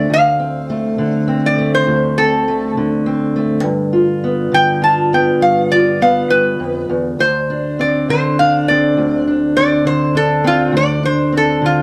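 Acoustic country blues played by a duo, this short cut from a longer piece has a rollicking, swaggering mood at 68 BPM in a straight 12/8. A metal-body resonator slide guitar carries the melody, its bright, nasal, metallic voice picked with fingerpicks and sitting up front from F4 to A5. Beneath it, a fingerpicked steel-string parlour guitar supplies a dark, boxy accompaniment from D2 to F4, also placed up front. Both guitars play throughout, moving from D7 to G7 at 3.6 seconds and back to D7 at 7.2 seconds. A wet studio reverb with a short tail surrounds the pair, and the tuning sits slightly sharp at A4 = 442 Hz.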